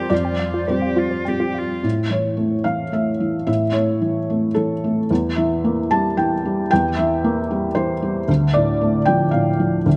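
A felt-muted upright piano opens this rubato neoclassical piece in 3/4, mellow and intimate up front with audible action noise, sounding together from the first moment with a smooth, lightly vibrato bowed cello line and a very quiet, blurred granular pad over an Fsus2 chord; a dark, round pluck enters just after, playing arpeggios in the background with chorus and slapback echo. From 1.9 seconds the piano carries on alone through 10.0 seconds as the harmony moves from A through Edim to Dm, with light reverb and close, detailed miking keeping the longing, melancholic mood near.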